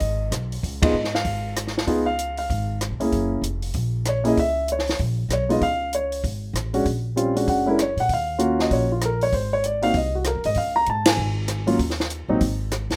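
Warm and swinging, this fragment of an up-tempo jazz piano trio at 194 BPM in Db mixolydian puts an intimate grand piano up front carrying the melody, its short sustain and audible action noise heard over a woody, growly pizzicato upright bass on steel strings and a dry compact cocktail kit with dark cymbals, a high-tuned snare and a punchy kick, as the band hits accents at 0.8 and 11.0 seconds and the piano drops out at 12.4 seconds while bass and drums carry on to 13.0 seconds, all in a rough home-demo mix with moderate studio reverb.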